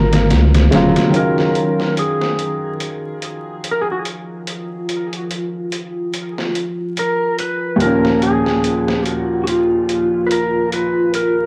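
A twangy, clean lap steel guitar carries the slide melody through this melancholic, dark trip hop excerpt at 72 BPM in Eb minor, roughened by sampler grit, cassette tape and tape echo over a deep, detuned ambient pad that takes a filter sweep from 1.1 s, a round analog bass heard only until 0.9 s, a woody upright piano entering at 0.7 s with harmonic tremolo, and muffled, overdriven, pitched-down sampler drums of hi-hat and snare, all set in a lush hall reverb with vinyl crackle on a home cassette recording.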